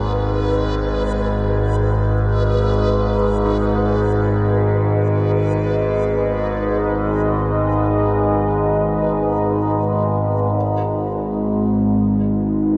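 Desolate and unsettling, this dark ambient drone drifts in free time, as if cut from a longer piece. Up front sits a low, resonant drone of sawtooth and sine tones whose overtones shift and evolve under a soft chorus. A deep, moody pad of detuned unison voices with a sub octave fades in from 0.5 seconds, holding shadowy sustained chords. A reversed, granular texture swells dreamily on a single high note, while a very quiet concert grand adds brilliant, polished arpeggios. Both the piano and the swelling texture stop at 10.6 seconds, leaving the drone and pad to carry the closing stretch. The whole mix is soaked in a huge ambient reverb and the worn, warbling pitch drift of old cassette tape.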